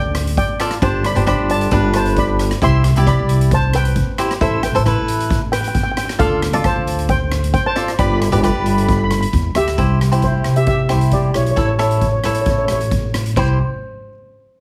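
A woody, up-front pizzicato upright bass drives this carefree, bouncy calypso excerpt in C major at 134 BPM, ranging from G1 to C3 beneath a mellow, shimmering steel pan melody played on double seconds with soft rubber sticks. From 0.6 s a crisp, picked cavaquinho adds close acoustic accompaniment, while a polished street-band drum kit with a boomy kick, dark cymbals, hi-hat and rim click carries an airy, big-room feel. The harmony moves from Dm through Gsus4, Cadd9 and Amadd9 toward C and A, all within a small room ambience and a heavily compressed, radio-like sound.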